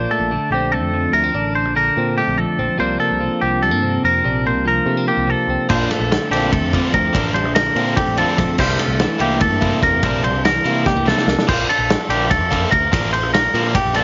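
Math rock and midwest emo in a restless, wistful 7/8, cut from a longer piece: a clean, compressed twelve-string electric guitar plays chords beside the twangy picked arpeggios of a second up-front electric guitar, over a bright, growly picked bass, moving between Bbmaj9 and suspended and extended C chords. At 5.7 s a double-tracked, biting overdriven guitar riff enters with a loose indie drum kit that sits up front, lo-fi and muffled with a punchy kick and a rolled-off top. A drum fill at 10.9 s carries the band into a new section at 11.5 s, all set in a small room with light reverb.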